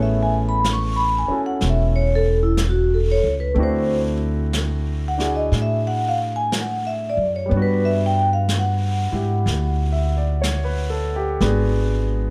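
A wistful, intimate jazz ballad excerpt at 62 BPM with a gentle swing, led by a dark, smooth vibraphone played with medium mallets, its metallic ringing tone shaded by slow motor vibrato as it carries the melody until 11.4 seconds. A warm concert grand piano with deep bass accompanies, a woody pizzicato upright bass sits up front, and a distant, roomy brush kit of snare and hi-hat enters at 0.6 seconds, all in light reverb. The harmony moves from Amaj9 through D9 and Gmaj7 to a closing G#m7b5.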